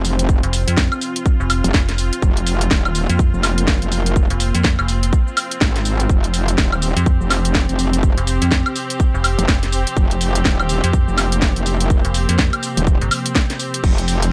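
A very quiet downlifter falls away by 2.2 seconds as a metallic, saturated wobble bass, a bright, detuned pad in the background with chorus and a filter swell, a biting chamber string ensemble, and an up-front garage kit with cracking snare, hi-hat, shaker, woodblock and crash launch this aggressive, swaggering bass house excerpt at 124 BPM with a 16th-note swing. A punchy electronic kick joins at 0.3 seconds and an overdriven, mellow FM bass at 0.4 seconds, with the pad, strings and both basses all pumping to the sidechain in a dry, close mix.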